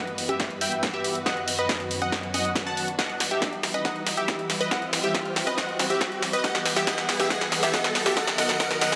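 A bright, detuned supersaw stab opens this soaring, bittersweet uplifting trance build-up, carrying the melody up front with a sweeping low-pass filter, digital delay and sidechain pumping, while a bowed symphonic string section sustains chords beneath it with soft attacks, expressive vibrato and the same pumping motion. An electronic riser creeps in from the background at 0.2 seconds, and the whole passage works as one long drum fill. A punchy analog drum machine sits prominently in the mix, its tape-warm snare, hi-hat and congas thinned by high-pass filtering and re-recorded in a large room. An electronic kick joins at 0.4 seconds and drops out at 8.7 seconds. The harmony moves from Emadd9/G through B/F#, Emadd9, C and Emadd9 again before landing on B. A moderate, lush hall reverb surrounds the parts, heightening the sense of anticipation in this excerpt cut from a longer piece.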